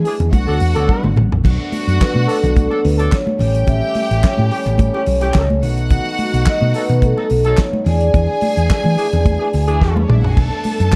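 A straight 4/4 disco groove at 108 BPM in B minor drives this glamorous excerpt, with a round, up-front hollow-body bass and a tight-kicked, fat-snared soul kit with handclaps and fills at 0.9 and 9.8 seconds, high-tuned congas in the background, punchy horn stabs, dark French horn chords, a lush bowed string line, and a ringing soft-mallet vibraphone melody with slapback echo entering at 2.0 seconds, all moving from Bm7 through A7, B7 and E7 in a dark, small-room production.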